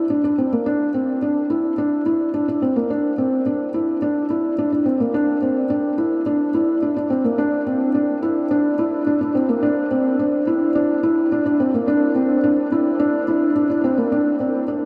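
Cinematic and melancholic, this short electronica fragment at 107 BPM in 4/4 features a lone felt-muted upright piano playing between Bb3 and E4 from 0.0 to 14.9 seconds. The piano sounds soft, dark and intimate, its thick felt giving a muted, mellow tone that sits up front. A huge ambient reverb with a 7.9-second decay soaks the mix in a dreamy haze as the passage builds through its first 14.1 seconds.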